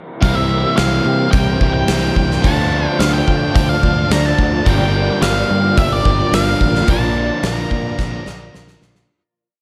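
A gated 80s drum kit with a tight kick and medium-tuned snare opens this hazy, brooding shoegaze and dream pop piece together with a growling fingered bass driving eighth notes, two overdriven guitars strumming and ringing chords in the background, a silky string machine pad and a dark octave-fuzz lead guitar playing call-like motifs through analog delay. A very quiet, shimmering twelve-string acoustic guitar adds picked arpeggios from 0.5 seconds, while the semi-hollow guitar carries reverse reverb and the first overdriven guitar dips with the whammy bar. The whole piece is a single verse moving from C7sus4 through Dm7 and Gm7 to Bbmaj7, fading out from 6.9 seconds as a drum fill closes it.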